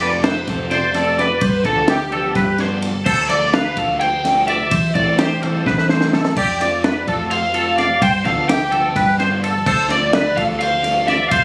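Playful and wistful, this math rock and midwest emo excerpt moves at 255 BPM in 7/8, with a bright, up-front overdriven guitar carrying the melody through a slapback echo while a clean, chorused electric guitar spins bright arpeggios beneath it and a double-tracked crunchy guitar drives the riff. A very quiet, compressed twangy guitar adds accompaniment only until 1.4 s, as a round, punchy hollow-body bass and a dark, smooth cocktail kit with a high-tuned snare and punchy kick anchor the groove, the drums breaking into a fill at 5.7 s. Chords cycle through F6, G9sus4, Dm7 and Am7/E in a phone-captured room sound with light reverb and compression.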